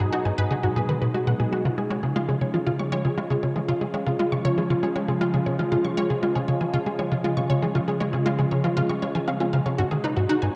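A swirling, detuned analog pad with phaser and chorus holds sustained chords from the first moment, joined at once by a bright, lush unison pluck spinning tape-echoed arpeggios and a tight, punchy sequencer bass riff with ensemble chorus and tape echo, in a hypnotic, cosmic piece of ambient sequencer-driven space music at 118 BPM that moves from G#m7 to C# at 1.7 seconds and back to G#m7 at 9.8 seconds, all bathed in a wet spring reverb and an echo-heavy mix in this short cut from a longer piece.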